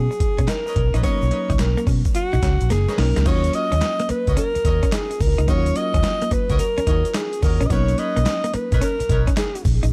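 Confident and punchy, this cut from a longer new jack swing R&B piece moves at 108 BPM in Eb minor with swung sixteenths: an up-front subtone alto saxophone with scooped notes carries the melody over a gritty, overdriven sampler-style drum kit with thumpy kick, snare, hi-hat, handclaps and crash, plus a round, foam-muted fingered bass, a mellow FM electric piano with chorus, a clean direct-recorded guitar riff in lush chorus, a grainy egg shaker in the background, and distant jazz-style horn stabs from 0.7 seconds, while a drum fill at 2.7 seconds leads the harmony from Bmaj9 to Ebm7 in a dry sound.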